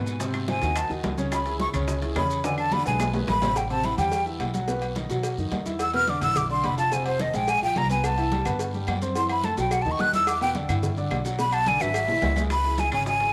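A smooth, vintage grand piano and a woody pizzicato upright bass open this sophisticated, fiery Afro-Cuban jazz excerpt, soon joined by a background bed of raspy guiro, grainy maracas, round low-tuned bongos and cowbell, thick-skinned congas, ringing timbales and agogo bells, and compressed claves that drop out at 3.1 s and return at 8.0 s, while a breathy, expressive jazz flute with vibrato and lifted highs solos up front from 0.5 s, with drum fills punctuating the form inside a moderate echo-chamber reverb.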